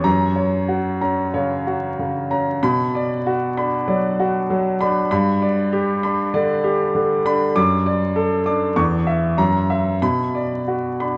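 Passionate and agitated, this classical virtuoso piano study in B minor moves at 91-100 BPM in 4/4 with a rubato feel, tuned to A4 = 445 Hz. A clear, open baby grand piano plays solo and up front across E2 to D6 for the full 11.2 seconds, its long sustain blooming into moderate concert hall reverb over vinyl crackle. The harmony travels from F# through Bm, G and D/F# before C#m/E and F#7 resolve back to Bm at 10.0 seconds, in a short passage cut from a longer piece.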